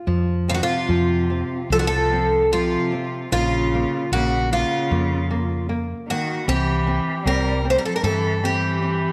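A moderate recital-hall reverb gives this short cut from a longer fado-style ballad an intimate concert-room bloom. The mood is mournful and longing, and the 4/4 pulse moves with a loose rubato feel. A fingerpicked classical nylon-string guitar provides soft accompaniment from the opening. A fretless electric bass enters almost at once with a dark, growly, hollow-body tone that is both round and punchy. At 0.5 seconds a picked twelve-string acoustic guitar takes the melody up front, its octave-doubled strings bright and shimmering, while a single bowed cello with vibrato traces a warm, woody second line beneath it. The harmony moves from F5 to Bbm and then to C.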